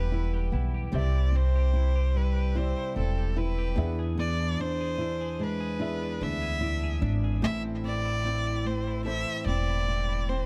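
A small room lends this short acoustic pop excerpt an intimate, close feel, with the woody, thumpy pizzicato upright bass sitting up front on gut strings. The mood is heartfelt and easy-going in a straight 4/4, moving through Em, C, E7 and Am. A rich, boxy solo violin carries the melody, bowed with vibrato and expressive portamento and trailed by a delay. Beneath it, a warm fingerpicked flamenco guitar accompanies with audible finger squeak, while a bright, twangy twelve-string electric guitar plays clean, compressed arpeggios in the background, bathed in spring reverb. A clear upright piano joins at 0.9 s, also in the background, its natural tone carrying audible action noise through to the end at 10.5 s.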